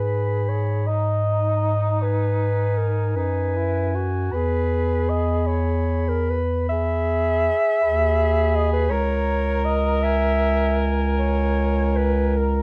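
Yearning and elegiac, this brief classical excerpt for a single-reed quartet unfolds slowly in G# minor, its dotted-quarter pulse sitting around 46-56 BPM in 12/8 with a free, rubato feel. The clarinet carries the melody high in its range, yet it sounds dark and distant, with a soft attack and a roomy quality that places it in the background. Beneath it, the alto saxophone sings a mellow second line with vibrato, while the tenor saxophone supplies a vintage-tinged accompaniment, also shaded with vibrato. Up front, the bass clarinet anchors the low end with a warm, smooth-topped tone. The harmony moves from G#m to E at 4.3 seconds and on to C#m at 8.9 seconds, and the whole passage sits in light reverb with a dark, warm production that trims away the highest frequencies.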